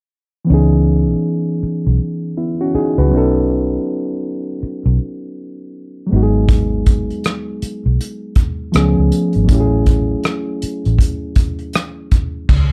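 A reedy, mellow electric piano bathed in plate reverb carries this soulful, late-night neo-soul excerpt in C# minor at 80 BPM with a 16th-note swing, moving through C#m9, B9, G#m7, C#7b13 and F#m9/A over a round, foam-muted fingered electric bass, until a small-room acoustic drum kit played with bundle sticks, with dark cymbals, punchy kick, hi-hat and rim click, enters at 6.5 seconds in a dark studio mix.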